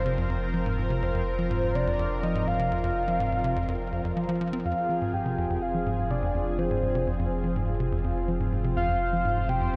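Expansive and cosmic, this ambient, sequencer-driven space music at 124 BPM in F minor (tuned to A4 = 438 Hz) sets a soft, round octave-layered synth lead with chorus, tape colour and delay over a lush, detuned unison pad, a tight, punchy sequencer bass riff with delay, and a deep sine sub bass, while a very quiet bubbling, resonant stepped-filter texture drifts through the first 4.7 seconds before the harmony shifts from Fm to Fmadd9, all bathed in a huge ambient reverb in a passage cut from a longer piece.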